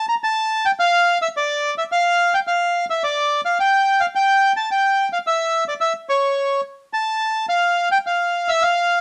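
Lightly reverberant and intimate, this 9-second fragment of a dramatic, melancholic tango features a solo bandoneon, reedy, dark and close-miked, sitting dry and up front as it plays rubato in the upper register between C#5 and Bb5 over a loose 4/4 pulse around 107 BPM.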